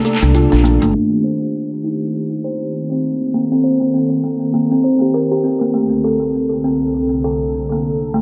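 Soaked in echo and a moderate plate reverb, the recording sits behind a low-pass filter that softens its top end. This short cut from a longer organic downtempo piece moves at 100 BPM in 4/4 with a light swing on the sixteenths, and its mood is meditative and hypnotic in C dorian. A mellow, woody kalimba sits up front, its soft fingertip-plucked arpeggios ringing through a tape echo, while a detuned sawtooth analog pad with a smooth, soft attack holds sustained chords underneath through a chorus effect. Crisp electronic shaker and hi-hat, also run through tape echo, and a dark, woody pizzicato upright bass that joins at 0.2 s both drop out at 0.9 s, leaving kalimba and pad alone until 8.2 s. From 0.9 s onward a filter sweep moves across the kalimba and pad as the harmony shifts from Bbmaj9 to Cm7 and later settles on Bbmaj9/C.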